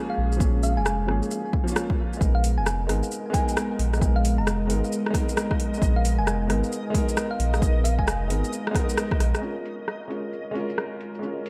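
A bright, 1980s-style digital sheen and a moderate, lush hall reverb frame this nocturnal, rainy future garage passage, cut from a longer piece and moving at 133 BPM in 4/4 with a 63% swing on the sixteenths, in B-flat Phrygian. A worn, woody upright piano, slightly detuned and roughened by 12-bit sampler grit and digital delay, carries the accompaniment alongside a warbling, nostalgic tape-like pad that sits mellow in the background, both pumping against the sidechain as the chords move from Bbm7 to Abmadd9. Up high, a round, tine-like thumb-piano synth pluck sings a gentle, dark melody through chorus, phaser and cassette coloring, while a deep, round sine sub bass sits up front with its own sidechain pump. A punchy, overdriven electronic kick anchors a deep house kit of metallic hi-hats, rim clicks and shaker, the hats, snare and percussion dulled by low-pass filtering. A reversed, dreamy granular texture drifts in at 3.8 seconds, and after a drum fill at 9.2 seconds the kick drops away as the music settles back onto Bbm7 at 9.4 seconds.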